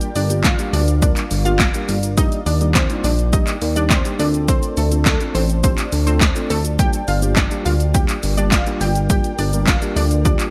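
A punchy, overdriven analog drum machine drives this energetic, bittersweet dance-pop piece at 104 BPM in G minor, its kick, snare, handclaps, hi-hat and shaker sitting up front with gated reverb. A glossy chorused synth bass with sidechain pumping enters at 0.2 seconds, while a round, detuned analog pluck carries the melody through chorus and delay over a mellow tine electric piano and an ethereal, airy pad in the background. The chords move from Gm7 through Ebmaj7 and Dm7 back to Gm7, all within a bright 1980s-style digital production that stays fairly dry.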